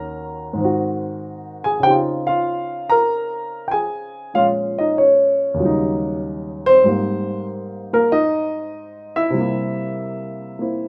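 Moody and late-night, this brief swinging jazz fragment, cut from a longer piece, features a dark, mellow grand piano alone and up front, its short-sustained notes ranging from Eb2 to Bb5 through rich seventh and ninth chords, framed by a moderate club reverb.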